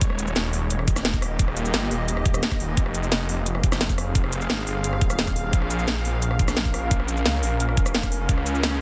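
A detuned saw bass, thick and chorused with tube saturation and sidechain pumping, drives this tense, futuristic dark technical drum and bass cut at 174 BPM in F minor, where a knocking, tape-warm electronic kick and an up-front kit of cracking snare, metallic hats, rim click and shaker sit over a swarming, warbling granular drone of sustained chords moving from Eb through Fm and Bbm to Db, all inside a dense, heavily limited modern master with light digital ambience.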